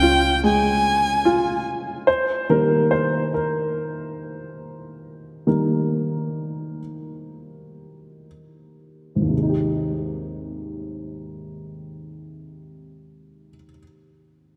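A bowed violin with vibrato and portamento opens this emotional, hopeful pop ballad in Ab major, its brief phrase touched with tape echo over an intimate baby grand piano with audible action noise and a round, dark, foam-muted electric bass, with violin and bass both dropping out at 1.6 s. From 2.1 s the piano carries on alone, colored by subtle chorus, as the tempo slows within a straight 4/4 range of 56-73 BPM and the harmony moves from Db to Eb before settling on Abmaj7 at 9.3 s. A lush hall reverb soaks the mix in a dreamy wash, and the passage is cut from a longer piece.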